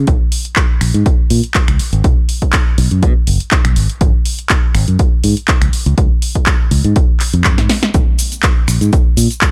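A direct, up-front fingered electric bass opens this funky, nostalgic slice of filtered disco house, its low-pass-filtered line pumping against the sidechain at 122 BPM in 4/4 with a light 16th-note swing. A punchy, tape-warm electronic kick and a layered house kit of punchy snare, warm hi-hats, cabasa, finger snaps and handclaps join at 0.1 seconds, with the hats and percussion also breathing to the sidechain. A drum fill arrives at 7.6 seconds in this dry passage cut from a longer track.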